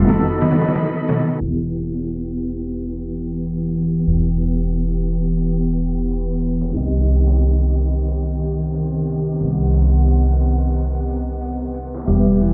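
The recording sounds muffled, as if heard through a wall, with a stone-room reverb and a low-pass filter dulling its top. This dark, cinematic trip hop fragment, cut from a longer piece, swings its sixteenths over a pizzicato upright bass that is woody, thumpy and up front, beside a rich, biting string section holding sustained chords with light vibrato. A clean tine electric piano, heard through built-in speakers, carries the accompaniment with tremolo, 12-bit sampler grit and tape echo, while a dark, fingered electric guitar plays arpeggios only until 1.4 seconds and again from 12.1 seconds. A pitched-down, compressed sampler-style kit of hi-hat and snare enters at 0.1 seconds in a small room, and a very quiet, tense, detuned sawtooth drone with phaser and vibrato hums beneath. Filter sweeps run through the piece, first on the electric piano during the opening break, as the harmony moves from B7 to Em and later to Cm.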